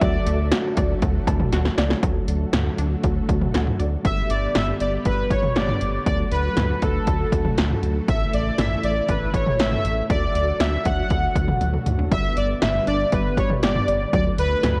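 A punchy, overdriven analog drum machine sets a straight 4/4 synth-pop groove of kick, snare, hi-hat, cowbell and toms, with a fill at 1.5 seconds, over a round, deep analog bass. Background unison pluck arpeggios and mellow string-machine cellos open the piece, and after a brief opening touch, a bold, brassy analog synth lead with chorus, vibrato and tape echo carries the melody from 4.0 seconds, with the detuned plucks returning at 12.1 seconds. The mood is wistful yet bright, set in plate reverb with a worn, warbling cassette-tape quality.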